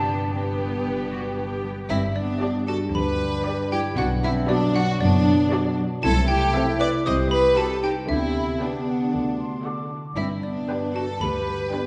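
This playful, whimsical film cue in G major at 116 BPM opens with bowed string sections: a rich violin section carrying the melody in the background, a clear violin section up front on a second line, a focused viola section filling the accompaniment, and cello and double bass sections holding the bass beneath a ringing, fingerpicked concert harp's arpeggios, while a pure silver flute adds brief touches. At 1.9 s, adding to the quirky mood, a bright, woody xylophone with plastic mallets joins the melody, a soft-attack clarinet adds another line and a mellow French horn section sustains chords. The flute returns at 8.6 s, and the whole ensemble sits in a wet scoring stage reverb, heard from further back in the room.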